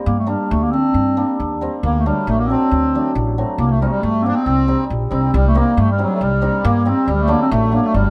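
A straight two-beat klezmer pulse drives this soulful, bittersweet excerpt, gathering speed from start to finish. A dark, distant clarinet carries the melody in a classical, solo style, sitting up front with a plate reverb that lends it a roomy quality. Beneath it, a woody pizzicato upright bass with steel strings stands forward, while a mellow, hammered cimbalom rings and shimmers quietly in the accompaniment. At 1.8 s a reedy, sweet accordion with light tremolo tuning joins on a second line, its vintage, band-limited tone set low in the blend. The harmony moves from G minor through D and C minor, and a new section begins at 5.3 s before the chords return to D, all within a moderate studio ambience.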